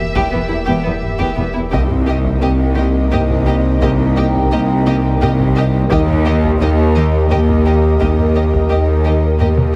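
Heavily compressed, radio-like sound in a moderate scoring-stage reverb frames this eerie, ominous cinematic suspense cue at 86 BPM in 3/4, cut from a longer piece, where a dark chamber violin section carries the bowed sul tasto melody over a warm chamber violin second line, a very quiet woody viola accompaniment, a very quiet, intimate studio cello riff, a rich, floating symphonic cello bass, a background double bass section, an ethereal, airy chorused pad, a deep, clean sine sub-bass drone, a ringing soft-mallet vibraphone, mellow French horn chords entering at 1.7 s, and a very quiet taiko ensemble that plays a fill at 9.6 s, as the harmony moves from Em to Cm7 to D#.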